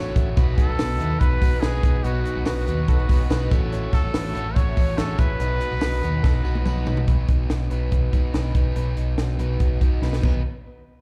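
Heard as a live gig through the venue's PA and bathed in club reverb, this bright, youthful jangly indie pop fragment opens with a breathy, close-miked trumpet carrying an intimate, whispered melody until 6.7 seconds. Beneath it play a crunchy overdriven guitar, a buzzy vintage combo organ and a compressed, clean electric guitar picking arpeggios, the organ and clean guitar set back with spring reverb and slapback echo, while a hollow, warbling pad and a faint, jingly tambourine sit very quietly underneath. Up front are a round, foam-muted vintage bass and a dry cocktail drum kit with punchy kick, high-tuned snare and dark cymbals; by 7.1 seconds the trumpet, organ, pad and tambourine have dropped away, leaving guitars, bass and drums, with a drum fill closing each section.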